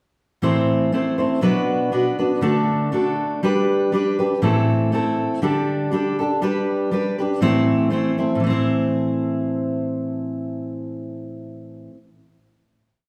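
Celtic folk in the form of a brisk Celtic polka, this short, complete piece moves at 120 BPM in 2/4 with a light swing on the eighths, and its mood is driving, dark and lively in A dorian. A lone fingerpicked steel-string acoustic guitar carries everything, playing solo from 0.4 s and ranging from A2 up to C5. The dreadnought has a bright, full-bodied tone with the crispness of fresh strings, sits up front, and lets finger squeak through as it works eighth-note strumming across open chord shapes. The harmony cycles through Am, Bm, D and G, touches a Dsus4, and settles back on Am, with the single section giving way to a final chord at 8.4 s. A wet recital-hall reverb with a 1.7-second decay surrounds the guitar, giving it the resonant air of a church or concert hall as the last chord rings out.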